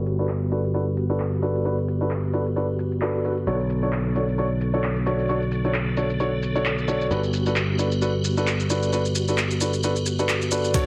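Boxy concert grand piano stabs with long sustain and a trail of delay sit up front in this swaggering, raw breakbeat excerpt at 132 BPM in 4/4, swung at 56% on the sixteenths. Beneath them, a bright, growly picked electric bass plays punchy, direct low notes through a low-pass filter. A piping tonewheel organ holds clean sustained chords with key click, chorus vibrato, a fast rotary speaker and sidechain pumping. A dry analog-style electronic shaker and handclaps run through nearly the whole clip. The harmony moves from Gmaj7 to Bm7 at 3.5 seconds and back to Gmaj7 at 7.1 seconds, with a filter sweep across the passage. At 10.7 seconds a gritty, compressed sampler-style breakbeat kit with a thumpy kick and hi-hat bursts in, and the mix carries a heavily compressed, radio-like sound with light reverb.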